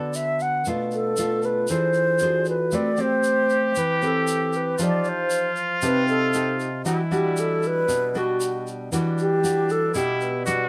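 A mellow alto flute carries the melody up front in this wistful, smooth bossa nova fragment, its pure, tongued tone colored by vibrato. Close beside it, a nylon-string guitar supplies fingerpicked accompaniment with a deep, warm classical body, the occasional finger squeak caught by the detailed, close microphones. From 0.7 s a vibraphone played with medium mallets and its motor off rings in the background, metallic and slightly boxy, as if heard in a small room, while a grainy, vintage tube shaker ticks along quietly beneath. At 2.7 s a trumpet with a straight mute enters on a second line, sounding nasal, breathy and distant in a roomy, jazz-style manner, with light vibrato and scooped notes. The harmony drifts through rich extended chords such as Gmaj9, E7b13, Am9 and Em9, and the dry, intimate sound keeps every part clear as the passage is cut from a longer piece.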